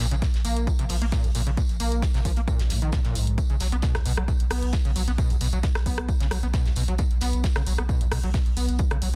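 Driving peak-time techno at 133 BPM with a relentless, industrial mood, this short cut from a longer piece rides an up-front, punchy electronic kick entering at 0.2 seconds beneath a deep, thick saturated sub bass and a squelchy, gritty overdriven acid bass riff with resonant filter sweeps, distortion, chorus, delay and sidechain pumping, while a punchy analog drum machine adds hi-hats and rim clicks and a dry, rolled-off 70s drum kit contributes hi-hat, fat snare and tambourine, all set in a small room with a dense, heavily limited modern master.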